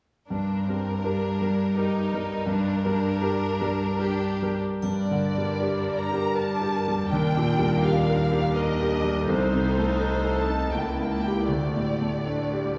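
Brooding and passionate, this romantic classical movement for piano and orchestra moves in a rubato 3/4 at 72-84 BPM in G minor. A brilliant, up-front concert grand carries the melody with deep bass and long sustain, over a rich, distant cello section. A clear, focused violin section adds a second line until 4.6 seconds. At 4.8 seconds a lush violin section with soft attack takes up the melody, while smooth violas sit in the background and a dark triangle sounds until 6.3 seconds. The harmony drifts from Gm through Ebmaj7 and diminished chords to a closing Dsus4, all heard from further back in a wet scoring-stage reverb.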